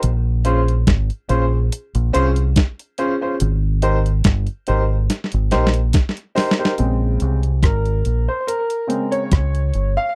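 Sweet and romantic, this lovers rock reggae excerpt at 71 BPM with a gentle 16th-note swing pairs a dark, round fingered dub bass with a thumpy, tape-softened 12-bit drum machine of kick, hi-hat, rim click and snare, beneath a worn baby grand piano with long sustain and slapback echo; it moves through Bbm7 and Abmaj9, then a drum fill at 5.1 seconds leads into a piano solo over Bbm9 from 6.8 seconds, in a dry, close 1970s-style studio recording.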